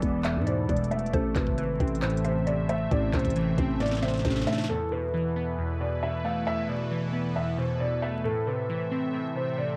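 Hip hop with a trap edge, this melancholic, brooding clip is cut from a longer piece and moves with a half-time feel, steeped in cassette tape, vinyl crackle, light reverb and a digital ambience. A dark, boxy grand piano carries the melody through tape echo and a low-pass filter, while glassy digital keys, warbling and up front, supply the accompaniment under a filter sweep that runs through the first section. A sweeping resonant pad built from detuned sawtooth tones with a noise layer holds airy, evolving chords beneath them, and a woody, round mallet-like synth pluck adds a second line in the background through chorus and phaser. A growling, buzzy 808-style bass and an electronic trap kit with knocking kick, sharp snare, crisp hats and handclaps, roughened by 12-bit sampler grit, drive the opening stretch. The bass drops out at about 4.5 seconds, and the kit closes with a drum fill before stopping at about 4.7 seconds. 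From there the piano, keys and pad carry on alone, the harmony swinging between Esus4 and A minor.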